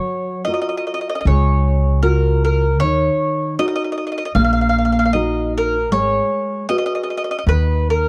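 A mandolin and a nylon-string guitar open this short, romantic Italian serenade together. The mandolin carries the melody up front with a mellow, woody tone from its picked double strings, while the guitar supports it with a full-bodied, deep classical accompaniment, thumb-plucked and marked by the occasional finger squeak. At 1.3 seconds an upright bass joins, sitting up front with pizzicato steel strings and a warm, woody tone. The sunny folk feel moves at an easy 77 BPM in 4/4 with a light swing on the eighth notes, drifting through F#maj7, D#m and G#m7 in F# major, tuned slightly below standard to A4 = 437 Hz. The dry, close sound recalls a 1970s studio, and the passage is cut from a longer piece.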